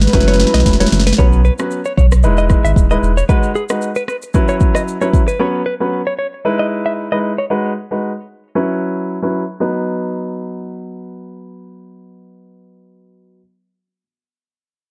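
A breezy and romantic afrobeats excerpt in B major at 114 BPM, where a breathy flute-like synth lead, a smooth detuned pad and soft damped congas flicker only in the opening second over a drum fill, a round sine sub bass drops out at 3.2 s and the deep-kicked electronic drum kit at 5.4 s, a bright, scooped clean electric guitar riff carries on into a filter sweep, and a present, up-front grand piano plays alone through to the closing B chord.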